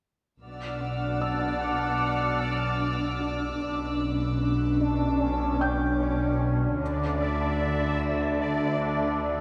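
A bubbling, detuned sawtooth texture with random filter steps sits up front from 0.4 seconds, holding sustained chords through chorus and its own reverb, while a distant, even double bass section and a focused, smooth-topped cello section carry the bass in this eerie, mysterious cinematic cue in B minor at 75 BPM. A close, lush violin section adds high vibrato until 6.4 seconds, and a soft, felt-muted upright piano enters in the background at 1.2 seconds; the harmony moves from Bmadd9 to Dsus2 at 6.8 seconds. The parts share a moderate scoring-stage reverb, and the passage is cut from a longer piece.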